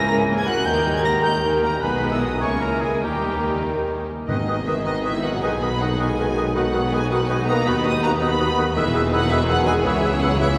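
Bathed in a cathedral-like reverb with a long five-second tail, this fast, dramatic passage from a symphonic movement feels restless and urgent. It is in G# minor and 6/8 and moves at 94-111 BPM in dotted quarters with an elastic, rubato push. A rich, focused violin section carries the soaring melody with vibrato and a smooth top. A hollow concert flute, a warm oboe, a very quiet clarinet and a lush background section of second violins weave the supporting lines. Underneath, a clear bassoon and an intense, very quiet viola section fill the accompaniment. The bass is anchored by a dark, woody cello section, a mellow tuba and a double bass section. A distant French horn section holds sustained chords throughout, and a dark, tight trombone section joins it from 4.3 s as the harmony moves from G# minor through B and Emaj7 toward C#m7. Hard-mallet, articulate timpani strikes, close and dry but very quiet, punctuate the texture from 0.7 s.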